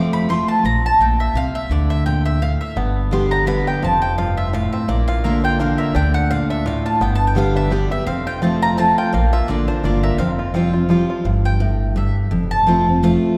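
A joyful, rustic bluegrass waltz in F major at 170 BPM with a swung 3/4 lilt opens on an up-front, woody mandolin melody over a full-bodied dreadnought acoustic guitar with audible finger squeak and a growly, thumpy pizzicato upright bass; a twangy, mellow fingerpicked banjo joins the tune at 2.8 seconds and drops away at 11.3 seconds as the mandolin takes a solo, the ensemble ringing in the long reverb of a church or concert hall in this brief cut from a longer piece.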